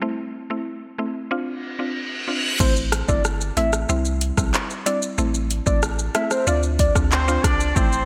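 Dancehall at 93 BPM in A minor, sultry and bouncy, opening on a woody, mellow FM mallet-like synth pluck with chorus, joined by an up-front reverse cymbal at 1.6 seconds that leads into the full groove at 2.6 seconds. There, an electronic afro-pop drum kit with a deep kick, metallic hats, handclaps, rim click and shaker sits up front in gated reverb, alongside a punchy sine sub bass with a pitch-drop attack and a soft, dark octave-layered synth lead carrying the melody with chorus, delay and vibrato. A tight jazz-style horn section with octave doubling and a smooth top arrives at 7.1 seconds, all within a bright 1980s-style digital production and plate reverb in this short cut from a longer piece.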